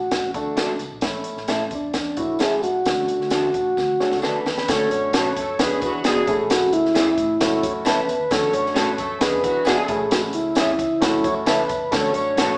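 A mellow, key-clicking tonewheel organ carries the melody through a slow rotary speaker from the first beat. Beneath it sit a dark, foam-muted fingered bass in the background, a dry cocktail drum kit up front with a high-tuned snare and punchy kick, a faint jingly tambourine, a woody upright piano, and slightly broken-up guitar stabs from a small old amp. This joyful, danceable slice of uptempo 1960s-style soul runs at 132 BPM in a straight 4/4, moving from D and A into a Dmaj7, E7, Amaj7 and F#m7 cycle after a drum fill, when a distant, roomy horn section with light vibrato adds a second line at 4.7 seconds, the whole band sounding live in one room, bathed in a wet, large studio reverb yet heard through a small speaker.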